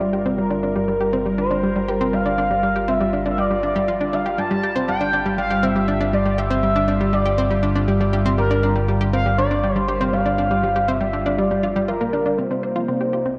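Hypnotic and expansive, this short cut of ambient, sequencer-driven space music moves at 120 BPM in G dorian, where a dark, smooth sawtooth-and-triangle synth lead sings an expressive, vibrato-laden melody up front with 12-bit sampler grit and tape echo, a bright, round analog pluck riff with a sub octave and cassette-tape character sits close beside it, an evolving wavetable pad morphs and warbles through full-bodied sustained chords, and a mellow pulse-width-modulated analog drone fades in underneath over the first 12.4 seconds, all bathed in wet spring reverb and heavy echo as the harmony shifts from Gm7 to Cm7 at 12.4 seconds.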